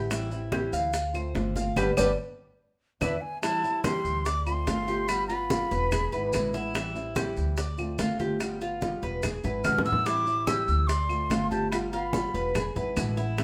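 Danceable and sultry, this short excerpt of Cuban son with a guajira lilt moves at 145 BPM in a straight 4/4, centred on A minor. A dark, fingerpicked flamenco guitar and a mellow, metallic Cuban tres with double strings spinning arpeggios carry the harmony from the start, cycling through Am7, Dm7, G7 and E7 over a thumpy, gut-strung upright bass played pizzicato. In the background, low-tuned congas with a thick skin, tight high-tuned bongos and woody, close claves set the groove, while grainy maracas sit distant in a large room. The band hits an accent from 1.8 to 3.4 seconds, and at 3.0 seconds an airy, vibrato-rich concert flute steps up front with tongued phrases, dropping out and returning alongside a drum fill at 9.6 seconds. A moderate studio reverb gives the ensemble a natural sense of space.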